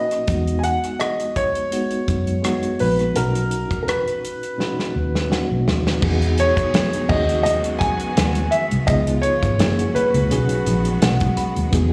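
Lush and smooth, this cut from a longer 1970s-style soul piece in B major moves at 84 BPM with a light sixteenth-note swing, as a clear, worn baby grand piano carries the melody with slapback echo over a reedy electric piano shimmering with fast tremolo, a round, foam-muted fingered electric bass and an up-front soul drum kit with dark cymbals and a tight kick that plays a fill from 4.6 to 6.0 seconds, before bright, bowed strings with vibrato enter at 6.0 seconds, very quiet ringing congas join at 6.7 seconds, and the electric piano adds a late fill, the whole heard as a live gig through the venue's PA in light recital-hall reverb.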